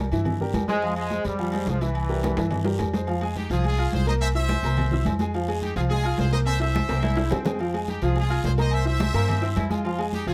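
Salsa with a passionate, danceable drive, where an up-front trombone section opens the melody before a brilliant trumpet section takes over at 3.4 seconds and a mellow, vintage-tinged saxophone section adds a second line from 6.9 seconds, all over warm upright piano, thumpy gut-string pizzicato bass, ringing congas, background agogo bells and timbales, and a raspy guiro, with drum fills along the way, captured close and dry in this cut from a longer piece.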